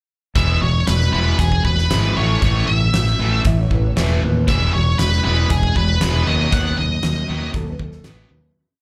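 At 0.4 seconds this short, sunny and swaggering classic rock piece in E major starts with drums, bass, lead and two rhythm guitars together, at 117 BPM in a straight 4/4 verse. A huge arena drum kit with a fat snare and punchy kick sets a rock groove. A growling fingered bass sits up front with driving overdriven eighth notes, and a pair of bright, overdriven rhythm guitars chug palm-muted eighth notes in the background, one of them crunchy with slapback echo. Over this, a dark octave-fuzz lead guitar plays hook phrases built from a short motif. At 3.5 seconds a compressed, slightly broken-up slide guitar joins with low-level blues licks through slapback echo and digital delay. The whole performance sounds like a live gig heard through a venue's PA in club reverb, and it fades out from 6.5 seconds.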